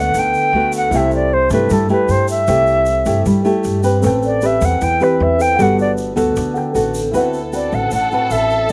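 Bossa nova with a breezy, sunny mood, cut from a longer piece, where an airy silver concert flute with vibrato carries a solo melody over fingerpicked nylon-string guitar with audible finger squeak and woody pizzicato upright bass, joined almost at once by a grainy tube shaker and then by a very quiet baby grand piano from 0.9 seconds, before a lush bowed violin section with portamento adds a second line at 7.1 seconds, all in a dry outdoor sound with slapback echo on the flute and guitar.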